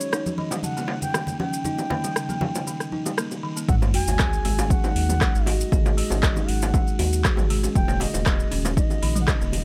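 A straight 4/4 groove at 118 BPM drives this spiritual, hypnotic afro house excerpt, built on a deep house kit of handclaps, metallic hats, rim click, shaker and toms pushed through overdrive. Low-tuned, saturated bongos in soft hands run throughout, while ringing, close-miked congas struck with hard hands play until 3.0 seconds. A buzzing, woody kalimba spins thumb-plucked arpeggios that pump with the sidechain and trail tape echo, and above it a bamboo bansuri carries the melody with vibrato, a crisp attack, airy lifted highs and its own tape echo. At 3.7 seconds the drop arrives with a punchy, layered electronic kick, a very quiet sub drop impact, and a dark, deep analog bass blending sawtooth and sine that also pumps with the sidechain. The harmony moves from D#7 to G#5 and back to D#7(no3), all in a dry, close sound with little reverb.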